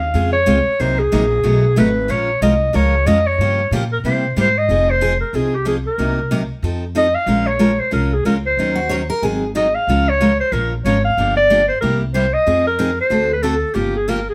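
A clear clarinet leads this bittersweet, virtuosic stretch of jazz manouche, singing a scooped, vibrato-laden solo line that sits up front yet carries a distant, roomy glow. Beneath it, a picked steel-string acoustic guitar supplies the swinging accompaniment with a bright, full-bodied dreadnought tone, fresh strings and the occasional finger squeak. An upright bass played pizzicato on gut strings anchors the low end with a woody, thumpy pulse. Around 8.8 seconds a second picked guitar, bright and up front, slips in with a brief line that ends by 9.5 seconds. The harmony winds through rich minor-key changes such as Dbmaj9, Bbm7 and C7b13, and the whole ensemble sits in a moderate studio reverb, the sound of a fragment cut from a longer performance.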